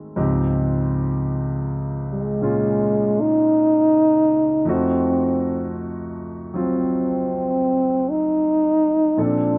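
A breathy, mellow trombone with light vibrato and a soft attack carries the melody from 2.1 seconds over a clear concert grand piano with deep bass and long sustain, set in a tender, intimate slow jazz piece at 53 BPM with a swung feel, moving from Dbmaj9#11 to F7b9 in light reverb and close, detailed sound.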